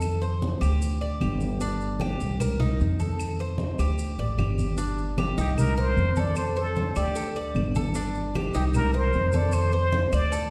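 A danceable, nostalgic Cuban son and guajira passage, cut from a longer piece, opens with a mellow, metallic picked tres playing double-string arpeggios over thumpy, pizzicato upright bass up front, together with bright, low-tuned congas that sound distant, woody claves in the background and grainy maracas, before a clear plunger-muted trumpet enters at 5.4 seconds with a close-miked, jazz-style solo full of wah-wah, scooped notes and light vibrato, while the mix sits in a wet stage reverb heard from further back and carries some lossy compression artefacts.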